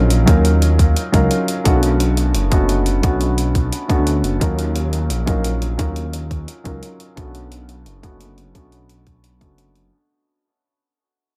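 A soft, felt-muted upright piano with audible action noise opens this lush, soulful liquid drum and bass excerpt alongside a deep, rumbling detuned saw bass, the piano sitting up front under a low-pass filter, dub echo and a filter sweep. A gritty, pitched-up sampler-style hi-hat enters at 0.1 seconds, followed by a tight, overdriven electronic kick at 0.3 seconds. The whole passage fades out within a moderate spring reverb and an echo-heavy mix.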